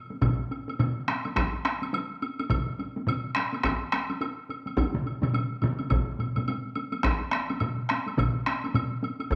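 Japanese traditional taiko drum ensemble music, powerful and ceremonial, moving at 106 BPM in a swung 4/4. It layers three taiko ensembles struck with heavy sticks (one compressed and saturated, one sitting up front) alongside solo taiko drums hit with hard sticks and a woody, band-limited vintage woodblock, all in a short cut from a longer piece bathed in a wet echo chamber reverb with small room ambience.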